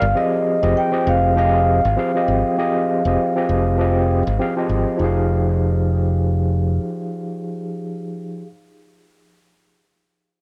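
A relaxed 99 BPM groove in 4/4, with a gentle swing on the sixteenths, drives this smooth sunset chillout clip in F minor, resting on an Fm7 chord. Soft-mallet vibraphone carries a mellow, ringing melody until 4.4 s, tinged with vintage 12-bit sampler grit. Beneath it, an up-front overdriven tine electric piano, barky through a combo amp with medium tremolo, supplies the accompaniment, and both keyboards pass through cassette tape and analog delay. A bright, direct fingered electric bass anchors the low end until 6.8 s, and the piano carries on alone until 8.5 s, all within a moderate spring reverb and the hazy character of a home cassette recording.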